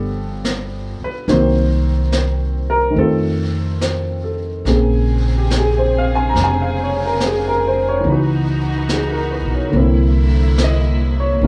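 A small room's light reverb frames this wistful, smoky jazz ballad at 71 BPM in a swung 4/4, where an up-front, woody upright piano and a pizzicato steel-string upright bass carry the chords from G7 through F7, distant, roomy brushed drums with a high-tuned snare and rolled-off top enter at 0.4 seconds, and an intimate bowed string section, played sul tasto with soft attack and vibrato, joins at 4.7 seconds over Bbm9, Dbm11 and C9.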